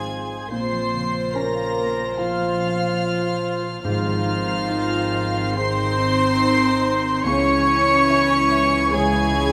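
Cinematic, hopeful and uplifting, this excerpt in Ab major moves at a rubato 72 BPM. A floating, sul tasto violin section carries the high melody, while a clear clarinet, a hollow silver concert flute, a distant second violin section and a very quiet cor anglais weave second lines over sustained chords from a mellow French horn section. Beneath them, a felt-muted upright piano and a close, rich viola section provide accompaniment, a ringing, thumb-plucked concert harp plays arpeggios, and a dark double bass section joins a warm cello section on the bass, with timpani sounding briefly from 3.8 to 5.1 s in a moderate scoring-stage reverb as the harmony passes through Bbmadd9 to Dbm.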